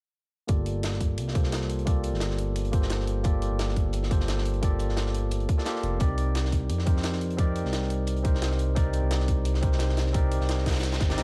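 Liquid drum and bass at 174 BPM in G minor, soulful and lush, this excerpt moves between Gm9 and Cm9 as a barky, clean tine electric piano accompanies through a low-pass filter sweep and delay, above a smooth, up-front synth bass that glides with portamento on a dark sawtooth-and-square tone. The tight, layered electronic kick sits alongside a saturated, gritty breakbeat kit with a medium-tuned snare and rolled-off top, while bright electronic hi-hats sit in the background. A very quiet noise sweep enters at 10.6 s, and the whole mix carries light small-room reverb and a dark, warm production.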